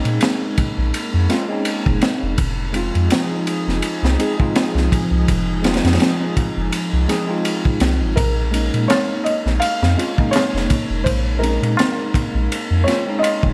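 A tine electric piano with harmonic tremolo, tape echo and sampler grit opens this melancholic, hypnotic trip hop fragment in Bb minor at 83 BPM, over a warbling, nostalgic pad and a deep, round dub sub bass, moving between Bbm11 and Fm7. A crunchy, gritty breakbeat kit with a punchy kick, high-tuned snare, dark ride and gated reverb sits up front from 0.1 seconds, swinging gently on the sixteenths. At 8.2 seconds a soft, thickly felted upright piano carries the melody through dub echo, and at 8.9 seconds a high-tuned tabla joins in the background, all under bright 1980s-style digital sheen, plate reverb and vinyl crackle.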